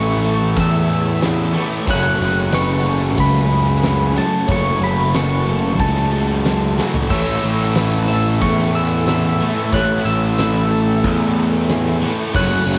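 Shoegaze and dream-pop rock at 92 BPM in A major, this dreamy, hazy excerpt from a longer piece sets a round, gentle FM synth lead with chorus, cassette tape and analog delay over a lush, phased string machine, a boxy, shimmering twelve-string acoustic playing arpeggios, a biting overdriven guitar riff alongside sludgy double-tracked and thick fuzz guitars, an up-front, growly fuzz bass, a huge arena drum kit with a fat snare that comes in at 0.2 s and fills at 6.8 s, and a jingly tambourine from 1.2 s, all moving from A to F#m and back with light reverb and a cassette home-recording haze.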